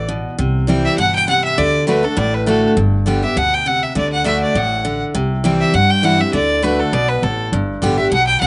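Swung eighth notes at 202 BPM in 4/4 drive this virtuosic bluegrass fragment in D mixolydian, where a clear, earthy bowed fiddle with light vibrato carries the melody up front over a bright, full-bodied picked dreadnought guitar and a dark, woody, thumpy pizzicato upright bass, moving through C, D and G chords in a dry outdoor sound with softened highs.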